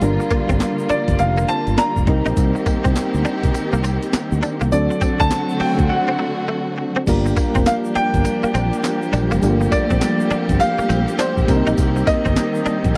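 Bouncy and slick, this short cut from a longer new jack swing R&B piece moves at 102 BPM in 4/4 with a 63% swing on the sixteenths, set in G minor and cycling through Gm7, Cm7 and D7. A gritty, compressed breakbeat kit drives it with a thumpy kick, medium-tuned snare, handclaps, hi-hat, tambourine and crash, its tape-warm tone sounding re-recorded in a small room, while a grainy egg shaker sits far in the background. Underneath, a dark, round fingered electric bass holds the low end, and soft, warbling electric-piano-like synth keys with chorus supply full-bodied vintage chords alongside a lush symphonic string section that sustains with vibrato and portamento. A bright, twangy clean electric guitar, recorded direct and treated with ensemble chorus, plays a picked riff from 0.2 seconds, and a clear baby grand piano with long sustain and slapback echo carries the melody from 0.9 seconds. 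A brief break arrives at 5.9 seconds before the second section begins at 7.1, all captured in a dry, close 1970s-style studio sound with light reverb.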